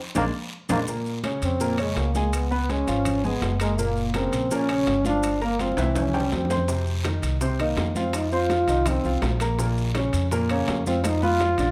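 A straight 4/4 Afro-Cuban jazz groove at 165 BPM in Bb minor opens with a band accent and drum fill, driven by bright, thin-skinned congas, ringing metal-shell timbales, raspy guiro and grainy maracas, while very quiet, round low-tuned bongos drop out within the first second and return at 6.7 seconds. Up front, a woody, dark pizzicato upright bass and a natural-sounding baby grand piano carry the harmony through chords such as Bbm9, Db7, Gbmaj7 and Gm7. From 0.9 seconds, a mellow, smooth-topped trombone with vibrato and plate reverb takes a sultry, sophisticated jazz solo, with further drum fills along the way in this excerpt from a longer piece.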